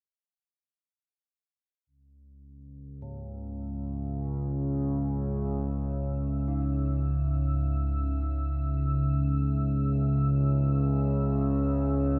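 In free time, this cavernous, ominous dark ambient drone in C# minor rests on a C#m chord as a dark analog pad fades in at 1.9 seconds, its detuned sawtooth and sub-octave tones sustained with chorus. An up-front analog drone enters at 2.8 seconds, warbling and evolving with pulse-width modulation, while a bright quartz singing bowl fades in as background arpeggios from 3.0 seconds, its pure, ringing tone carried by diffuse ambient delay. A huge, wet reverb surrounds the whole, and the recording is cut from a longer piece.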